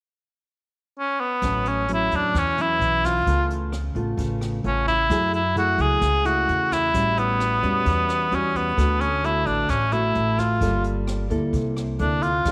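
Bossa nova in A major at 131 BPM, sophisticated and relaxed, with a warm, up-front cor anglais entering alone at 1.0 s to carry the melody with vibrato and a soft attack in a classical solo style. At 1.4 s a dark, thumb-plucked nylon-string guitar with audible finger squeak, a woody pizzicato upright bass and a brushed jazz kit with a boomy kick, hi-hat and rim click join in beneath it, moving through lush chords such as A69, F#m9 and Gm9. A moderate echo chamber reverb and small room ambience give the short cut a natural, intimate sound.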